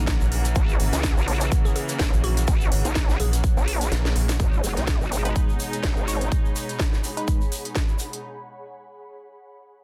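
This bouncy, aggressive bass house excerpt in G# minor at 125 BPM opens on a drop with a glassy wavetable pluck melody, a rich bowed string section and an ethereal, sidechain-pumped pad over a dark, metallic FM bass with overdrive, a punchy up-front kick, a garage kit with cracking snare and crisp hats, and a grainy egg shaker, all swung on the 16ths. A nasal, vowel-sweep wobble bass enters at 0.6 s, and after the kick drops out for a drum fill at 3.9 s, the second section brings a very quiet electronic impact at 4.4 s and, from 5.3 s, a band-passed chord stab with phaser, cassette tape character and a filter sweep. The dense, heavily limited master sits in a digital ambience, with the harmony moving from A#dim to G#m.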